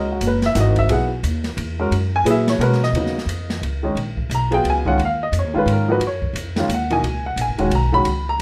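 A dark, mellow baby grand piano with audible action noise sits up front, voicing suspended and minor eleventh chords over a woody pizzicato upright bass and an open jazz drum kit with dark cymbals and a boomy kick that joins at 0.2 seconds, in this intense, searching modal jazz excerpt in Eb minor, swinging in 3/4 at 176 BPM under light reverb.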